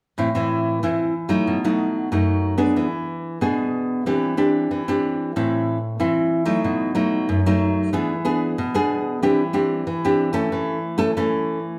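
Samba at 93 BPM with a yearning yet lively mood: a solo fingerpicked nylon-string guitar, bright and full-bodied with a deep classical tone and audible finger squeak, sits up front in a wet large-studio reverb recorded live in one room, cycling twice through Am, B7, E7 and Cadd9/E before landing on A/E at 10.5 seconds.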